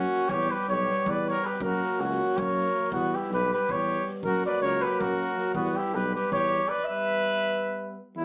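This Balkan folk piece for brass band is cut from a longer work and races at 320 BPM, counted in eighths, in a straight 7/8 over E dorian sharp4, with a virtuosic, fiery mood. A warm flugelhorn carries the melody up front, though it sounds distant and roomy, while a clear trumpet plays a second line beneath it, both in a classical style. Two euphoniums supply the accompaniment: one mellow and far-off, the other vintage-toned with vibrato, sitting in the background. A close-miked tuba with light vibrato holds down the bass. An acoustic drum kit played with soft mallets adds a fat snare and punchy kick from a studio room, dropping out at 6.8 s while the brass carries on to 8.2 s over harmony that swings between Em and F#, all wrapped in a wet reverb that sounds set back in the room with a small-speaker character.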